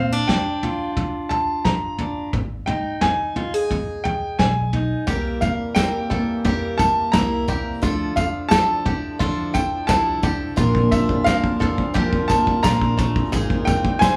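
This uplifting, hopeful indie folk excerpt opens with a brilliant upright piano carrying the melody up front, its action noise audible and its sustain long. Beneath it sit a fingerpicked steel-string acoustic guitar with fresh strings and a dark, woody pizzicato upright bass in the background. A soft brush kit enters almost at once, smooth and rolled-off on top, with a tight kick, medium-tuned snare and toms playing a drum fill through the whole build-up. At 5.1 seconds the fingerpicked guitar gives way to a full-bodied picked dreadnought with finger squeak, and a reedy, breathing harmonium, a twangy banjo played with fingerpicks and a jingly, dry tambourine join, with the harmonium and tambourine in the background. The chords move through Bb, Ab5, C7, Dmadd9, Bb and Abadd9 in a straight 4/4 as the band plays live together in a wet small room, the passage cut from a longer piece at 14.2 seconds.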